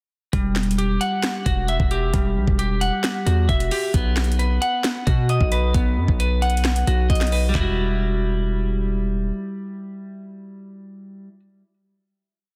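A clean electric guitar, dark and picked, drifts through a patterned arpeggio in eighths that repeats like a sampled loop, bathed in lush chorus and tape echo, in this eerie, hard-hitting trap piece at 133 BPM in half-time, E harmonic minor, moving from Emadd9 to B and back. Beneath it, a punchy, saturated 808-style bass holds long sub-bass notes that follow the knocking kick with pitch slides, while the electronic trap kit pairs a sharp snare layered with finger snaps with handclaps, metallic hi-hats with fast rolls, and toms. The drums drop out at 7.7 s and the bass at 9.3 s, leaving the guitar to carry the final chord until 11.4 s under a dense, heavily limited modern master.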